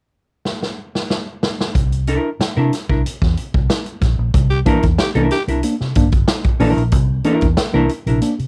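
A straight 4/4 funk groove at 93 BPM in C mixolydian, this gritty, strutting clip opens with a vintage drum kit rolling through a fill at 0.5 seconds. Its punchy kick, medium-tuned snare and hi-hat sit up front with a rolled-off top and cassette tape coloring. At 1.7 seconds a dark, round, foam-muted fingered electric bass arrives on a C9 chord, amped and moving between G1 and C3, and a clean, picked hollow-body jazz guitar soon joins up front with cassette-tinged accompaniment from D4 to Bb4. From 4.3 seconds a worn, slightly out-of-tune tine electric piano adds lightly overdriven stabs through its built-in speakers. A growling, raspy tenor saxophone breaks in briefly on a single G4, breathy with light vibrato and a present, pop-style edge. The home cassette recording carries little reverb, keeping the parts close and raw.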